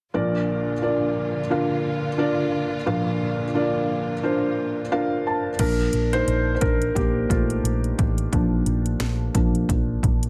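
Piano-driven pop with an uplifting, anthemic mood, cut from a longer piece and set in a gently swung 4/4. A felt-muted upright piano carries the whole excerpt, its soft, intimate tone up front with audible action noise and a slightly boxy character. Lush bowed strings hold sustained chords with vibrato beneath it through the opening stretch, and the piano plays a fill from 4.6 seconds. At 5.6 seconds the strings stop and the piano takes a solo, now joined by a round, foam-muted electric bass and an electronic house drum kit with a punchy kick, cracking snare, metallic hi-hats and crash cymbal. A moderate large-studio reverb gives the sound a sense of space.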